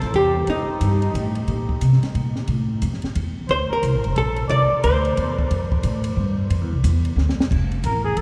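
A swung 3/4 pulse at 179 BPM drives this sophisticated small-group jazz piece in F major, where a woody, thumpy upright bass and a compact cocktail kit with a high-tuned snare and punchy kick play throughout, a dark, clean hollow-body electric guitar carries the melody up front, a raspy, growling trumpet with scooped notes and vibrato sits distant as a second line, and a drum fill at 7.2 seconds rounds off the passage inside a long, wet cathedral reverb.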